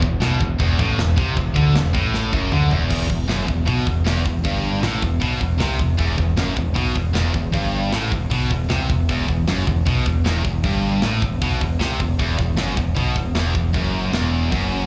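This dark, epic heavy metal clip sounds like a live club gig heard through the venue's PA, with a little club reverb around otherwise dry-sounding parts. At 155 BPM in a straight 4/4 feel, it sits in E minor, opening on an E5 power chord before settling onto Em at 2.9 seconds. Two bright, high-gain electric guitars drive the riff in a low register. One carries a scooped tone, and the other adds a touch of slapback echo to its distortion. Beneath them, a growling picked electric bass with an overdriven, direct-and-amped sound sits up front as the loudest part. A tight, mid-forward acoustic kit with a medium-tuned snare, rolled-off top and china, crash, hi-hat and toms plays a fill from 2.1 to 2.9 seconds that launches the second section, and the drums drop out at 14.6 seconds, just before the clip ends.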